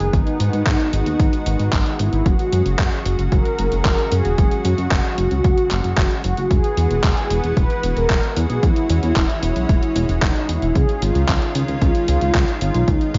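A lightly reverberant, digitally ambient mix with vinyl crackle and a dull, capped top end frames this melodramatic, bittersweet italo disco excerpt at 113 BPM in a straight 4/4, moving through G#m, F#5, Eadd9 and C#add9. A round, brassy synth lead with vibrato and a filter sweep carries the melody over a lush, detuned unison pad with a slow attack and chorus, while a glossy, chorused pulse-wave synth bass with a plucky filter sits up front. A punchy, overdriven electronic kick enters at 0.1 seconds beside a tape-toned, sampler-style 8-bit drum machine playing handclaps and hi-hat in gated reverb.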